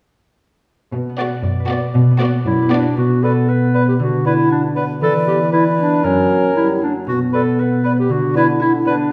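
Ringing, up-front concert harp arpeggios drive this playful, whimsical and sneaky film cue in B minor at 118 BPM in 2/4, first joined briefly by a smooth, expressive cello section on bass, a bright, distant violin melody, a second violin line and a close, lush viola accompaniment; a warm, up-front clarinet enters at 2.5 s, mellow French horn chords follow at 3.0 s, and from 3.2 s an airy silver flute and a cor anglais with light vibrato join them to carry the quirky cut from a longer piece, all set in a stone room reverb.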